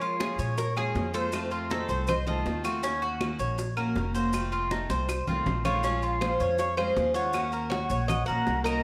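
A metallic, double-strung Cuban tres carries the melody in this sultry, nostalgic excerpt of Cuban son and guajira at 160 BPM in Bb minor, shadowed by an airy concert flute with vibrato on a second line, over a bright jumbo steel-string acoustic guitar, a second tres picking arpeggios, a growly, thumpy pizzicato upright bass up front, and background congas, round low-tuned bongos, woody claves and grainy maracas, with a drum fill from 4.9 to 5.8 seconds overlapping the melody's return at 5.7 seconds, all set in a moderate large-studio reverb.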